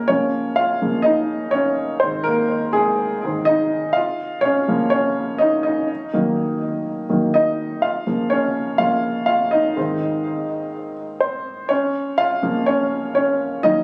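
This pop piece has an anthemic, hopeful mood, carried in straight 4/4 by a lone upright piano that plays from 0.0 to 13.8 seconds. The piano sounds woody and polished, sitting up front in the mix with a short sustain and a touch of delay, spanning from Ab2 up to F5. Its harmony circles through Db6, Ab and Ebm chords, returning to Db6 again and again to give the passage a hopeful, uplifting lean. The sound carries a moderate studio reverb alongside a club-like ambience, and the phone capture in the room adds a compressed character. This is a short section cut from a longer piece.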